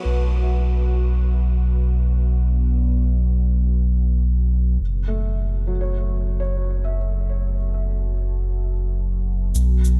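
In free time, this spacious, deep ambient dub excerpt in B minor, tuned to A4 = 435 Hz, moves from Bm7 to F#m7 at 4.8 seconds over a round, up-front sine sub bass with tube saturation, while a dark, detuned sawtooth pad with chorus and a filter sweep holds sustained chords and a soft, intimate felt-muted upright piano plays low-passed arpeggios with delay until 9.6 seconds, when a tape-toned electronic shaker with dub echo closes the cut.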